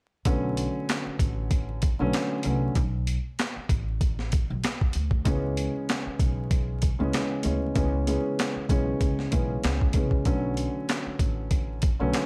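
A compressed, sampler-style boom bap kit with a thumpy kick, high-tuned snare, handclaps and hi-hat sits up front, re-recorded in a large room, driving this gritty, tough boom-bap hip-hop excerpt at 96 BPM with a swung feel in B dorian, while a dark, mellow upright piano with a vintage cassette-tape character plays up front over Bm7 and C#m7 and a woody pizzicato upright bass holds the low end, all dry and dusted with vinyl crackle.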